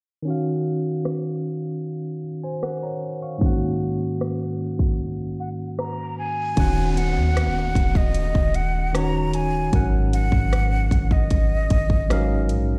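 Contemporary R&B with a moody, sensual air, this excerpt opens on a clean, up-front tine electric piano moving through lush minor ninth and suspended chords under a filter sweep. A punchy, tape-tinged electronic drum kit of kick, hi-hat and rim click joins at 1.1 seconds, and a breathy, mellow silver flute with unsteady vibrato and a trail of delay takes the melody at 5.4 seconds, shortly after a brief break sets in. At 6.6 seconds a round, dark, sine-like 808 bass arrives up front alongside a faint electronic downlifter, all set in a big, low-passed studio reverb that sounds like a large sound system in a bare room.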